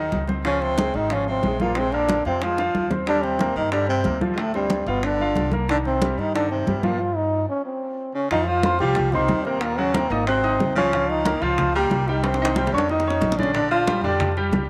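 Sultry and fiery, this excerpt of fast Afro-Cuban jazz at 183 BPM puts a breathy, mellow trombone up front with light vibrato and scooped notes, while a clear baritone saxophone with tape echo carries a lower second line beneath it. A natural-sounding baby grand piano with short sustain, a woody, thumpy pizzicato upright bass on gut strings, thick-skinned congas played with soft hands, and round, low-tuned bongos in the background fill out the band, all set in a moderate spring reverb. Drum fills arrive at 2.6 and 12.2 seconds, and a stop from 7.0 to 8.3 seconds leads into a new section moving through jazzy extended chords.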